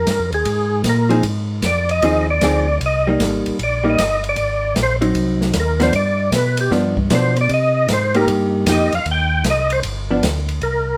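Soul jazz organ trio with a smoky, soulful mood and a swinging feel, cut from a longer piece, where a gritty, overdriven tonewheel organ carries the solo melody through slow rotary speaker and chorus vibrato, its percussive attack up front. A round, mellow second organ with audible key click holds down the bass line, while an airy, acoustic drum kit with dark cymbals and a boomy kick plays underneath. From 1.1 seconds a clean, compressed hollow-body electric guitar adds picked accompaniment over the minor-key changes, all set in moderate studio reverb.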